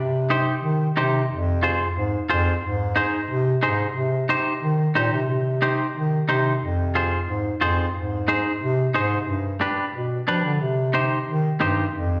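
Passionate and danceable, this cumbia excerpt moves at 180 BPM in C minor, cut from a longer piece. A dark bass clarinet with a soft attack and smooth top carries the bass line in a classical style, while a clean, picked semi-hollow electric guitar with a compressed, hollow-body tone supplies the accompaniment from 0.3 seconds, both placed up front. A wet recital hall reverb surrounds them as the harmony moves from C minor through F minor and A-flat, touches G at 9.3 seconds, and returns to C minor.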